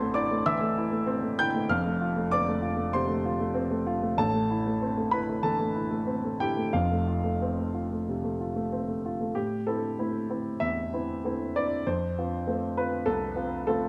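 A lone baby grand piano opens this wistful, intimate fragment of neoclassical minimalism, its tone natural and placed close and up front. Played with a rubato feel in 4/4, it moves between A minor and F chords throughout, spanning a range from F1 up to G6. A slapback echo trails the piano, set within a light reverb and a dark, warm production that keeps the mood personal. Around 9.3 seconds a new section begins, still circling the same two chords, before the clip ends at 13.9 seconds, cut from a longer piece.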